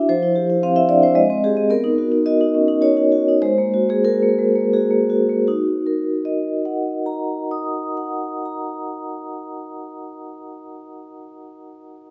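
A close, up-front vibraphone sits in a moderate recital hall, whose reverb gives each ringing note a gentle halo while the instrument itself stays full and dry. This short excerpt from a longer contemporary classical piece for solo vibraphone is in Eb minor and 3/4, with a flowing, reflective mood and a rubato feel that moves between 78 and 112 BPM. Played alone with soft mallets from 0.0 to 12.1 seconds, the vibraphone has a mellow, metallic tone shaded by a medium motor vibrato, spanning from F3 up to Eb6. The harmony drifts through open and lush colours, from Fsus2 to Abmaj7, Bmaj7 and Absus2, while the tempo slows down from 0.9 to 5.5 seconds. At 5.5 seconds a new section begins, settling onto an Eb minor chord.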